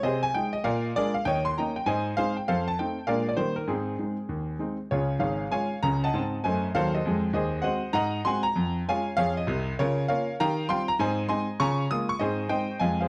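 A worn cassette-tape sound frames this short stride piano passage, with a wet studio reverb lending the room some depth. A clear, natural grand piano plays alone and up front throughout, its notes carrying a short sustain that keeps the texture crisp. The mood is swinging and exuberant, driven by a swing feel in 4/4 that spans the instrument from deep bass to a bright upper register. The opening phrase moves briskly through Bb7, Eb7 and F7 changes before shifting to Db at 4.9 seconds. The harmony then passes through Ab7b9 and a Bbm/Db chord before a closing turn of Eb69, Ab and Db6. Lifted from a longer piece, the passage ends on Ab at 12.2 seconds.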